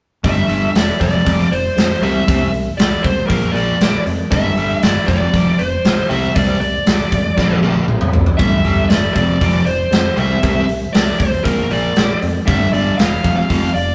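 A straight, swaggering 4/4 groove drives this powerful hard rock passage, cut from a longer piece, with a big, natural-sounding acoustic drum kit up front, its tight kick and medium-tuned snare breaking into a fill from 7.4 to 8.4 seconds. A picked semi-hollow guitar with a hollow-body crunch and a sludgy distorted guitar deeper in the mix share the riff over a growly, punchy fingered bass, while a dark, bluesy lead guitar sings the melody up front through distortion and tape echo. The rough rehearsal-room sound carries a stone room's moderate reverb and a warm saturation.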